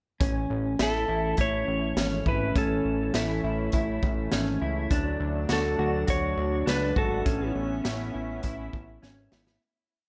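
A clean, dark lap steel guitar carries an up-front, motif-based slide melody with volume swells from 0.8 s to 7.5 s, floating over a blissful, ethereal dream pop groove at 102 BPM in A major. Beneath it, a mellow electric guitar plays a fingered arpeggio ostinato through chorus and delay, a smooth, detuned sawtooth pad holds sustained chords, and a fat, thick analog bass drives steady eighth notes with an evolving filter sweep, while a gritty, saturated garage drum kit with a punchy kick and a rolled-off top keeps a simple, spacious backbeat in a pumping small room. The harmony moves from A to D at 4.9 s and Aadd9 at 7.3 s, where a fade-out begins, and a drum fill closes the whole piece.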